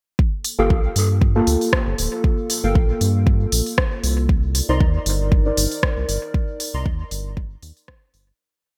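Dub techno at 117 BPM in G minor, hazy and cavernous, where an up-front four-on-the-floor electronic kick and a deep house kit's smooth hi-hats and rim clicks under gated reverb join a round, syncopated analog bass, while sparse, echoing chord stabs with a filter sweep, warbly lo-fi synth keys, and a slow-blooming dark analog pad with chorus and phaser pump between Gm9 and Cm9 before the fade-out from 5.7 seconds.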